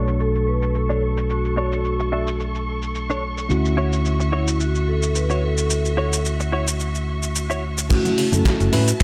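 Nu-disco with a groovy, sunny feel, where a ringing vibraphone melody with digital delay floats over mellow tine electric piano, clear bowed strings with sidechain pumping, a twangy clean guitar riff through chorus and dub echo, a punchy, up-front envelope-filtered bass and a gritty sampler-style drum kit with snaps, hi-hat and cabasa, all running beneath a filter sweep until a drop at 7.9 s brings in a tight kick drum, very quiet cabasa and congas, and faint detuned sawtooth pluck arpeggios.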